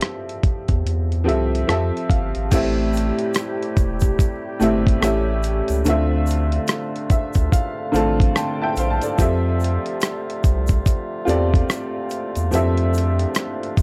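Nostalgic and dreamy, this lo-fi hip hop excerpt moves at an unhurried 72 BPM in F major, with a swung 4/4 feel. A worn, slightly detuned upright piano with a woody, boxy tone sits up front from the start, softened by a low-pass filter, alongside a gritty, compressed sampler-style drum kit built on a thumpy kick, hi-hat, rim click and crash cymbal. A round, deep analog bass enters at 0.7 seconds, its dark, sustained tone also placed up front, and the piano plays a short fill just before the second section begins at 2.5 seconds. There a filtered woodwind section joins with sustained chords in a classical style, touched by light vibrato, while a grainy, bright egg shaker sits close and dry in the background. The harmony drifts from Fmaj7 through Am7, A7 and Dm7 before returning to Fmaj7, all wrapped in light reverb.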